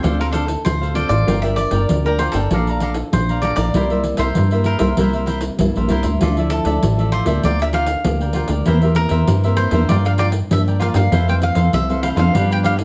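This excerpt opens with every part sounding at once: two cavaquinhos, a nylon-string guitar, a plucky analog bass and a pandeiro, setting a sunny, playful samba and choro mood at 98 BPM in straight 4/4, in F major. One cavaquinho carries the picked, crisp melody between A4 and G5, while the second fills in accompaniment from D4 to Bb5. The fingerpicked nylon-string guitar adds full-bodied, deep classical tone with fresh strings, and the punchy, funky synth bass sits up front with a fast-attack filter pluck on sawtooth and square waves that decays and evolves. The pandeiro is jingly, close and dry, played with soft hands. The harmony moves through Dm7, Gm7, Bbmaj7 and C7 before settling on Fmaj7 near 11.1 seconds, all heard from further back in the room through a wet studio reverb.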